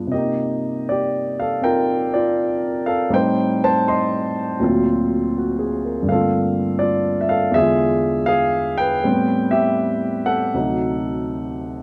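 Swung eighths at a loose, rubato 80 BPM in 4/4 carry this moody solo jazz fragment, where a single woody upright piano with long sustain sits up front in a dark, warm mix touched with light reverb, moving from Cm9 through altered dominants like D7alt and E7b9 across roughly 11.8 seconds.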